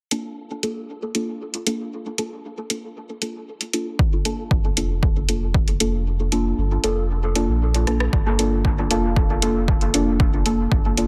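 Hazy and nocturnal, this dub techno excerpt in G minor moves at a straight 116 BPM in 4/4, built on a dark, nasal chord stab voicing a rootless Gm9, softened by chorus, phaser and dub echo, pumping against the sidechain and shaped by filter sweeps. A soft vintage rhythm box ticks metallic hi-hats and rim clicks up front from the start, a punchy, overdriven electronic kick arrives at 4.0 s, and a round sine sub bass joins at 4.5 s with its own sidechain pumping. The kick drops out briefly before a drum fill at 7.9 s, all set in a moderate spring reverb and a dense, heavily limited modern master.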